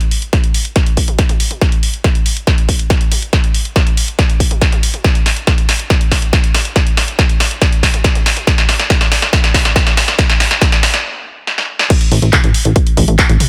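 Soaring and bittersweet, this uplifting trance excerpt, cut from a longer piece, spends its first 11.9 seconds on a build-up in which a punchy analog drum machine fills with crash cymbal, handclaps, hi-hat, snare and toms, with a short room on the snare, claps and hats, over an up-front, layered, tape-warm electronic kick. After a brief stop at 11.0 seconds, the drop lands and a plucky analog bass enters at 12.1 seconds, its saturated, wave-folded sawtooth, square and sine tones striking with a fast attack and decaying under sidechain pumping. Light reverb and digital ambience give the mix a sense of space.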